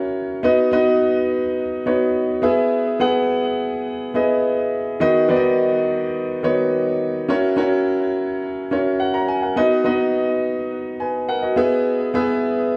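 Pop in a romantic, glossy mood at 105 BPM in straight 4/4, this brief passage from a longer piece features a solo concert grand piano, warm and up front with deep bass, an open tone and long sustain, touched with delay and set in a wet studio reverb as it moves through B, E, B/D# and F#7 before returning to B and E, tuned to A4 = 444 Hz.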